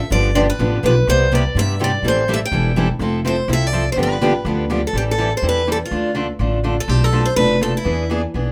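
A boxy, bright parlour guitar opens this short cut from a longer piece, picking a bittersweet, virtuosic melody in hot acoustic string swing at a brisk 248 BPM with a swung eighth-note feel. Underneath, a warm, up-front parlour guitar supplies accompaniment, while a full-bodied dreadnought guitar with fresh strings adds a second accompaniment part from the background until 4.8 s. An upright bass with gut strings, plucked pizzicato and placed up front, gives a woody, thumpy pulse throughout. The harmony moves through G7, Cmaj7, Am7 and Fmaj7 before settling into A minor at 4.9 s, where it turns darker through Dm and Bm7b5 to E7. A modest small-room reverb keeps the acoustic sound close and intimate.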